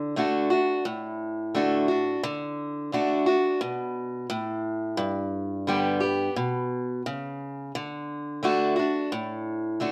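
Lightly reverberant, this short country fragment in D major at 87 BPM features a solo picked old ladder-braced acoustic guitar, up front and dark, woody and boxy with old strings, moving from D to G at 5.0 seconds and back to D at 7.7 seconds in a down-home, heartfelt mood.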